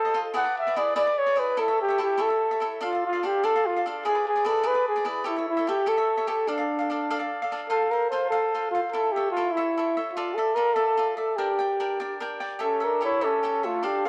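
In a straight 6/8 at 98 beats per minute, this romantic, proud mariachi passage in D harmonic minor, cut from a longer piece, sets a dark, up-front trumpet singing a smooth, lightly vibrato-tinged classical melody over a bright, crisp picked cavaquinho, soaked in a wet spring reverb, with a mellow, vintage-toned second trumpet slipping in beneath at 12.6 seconds as the harmony turns from Gm toward A7.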